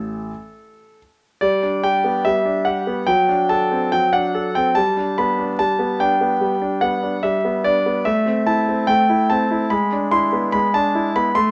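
Close, detailed microphones place a brilliant grand piano up front in a moderate recital hall, catching the intimate click of its action and a long, polished sustain. This playful, cheerful classical-period sonatina in G major moves at 72 BPM in a straight 4/4, tuned to A4 = 436 Hz, with the solo piano spanning A1 to C6 across its 11.5 seconds. After a chordless opening phrase, harmony arrives at 1.4 seconds on G, passing through D7/F# and Am before the fragment, taken from a longer piece, breaks off on E7/G#.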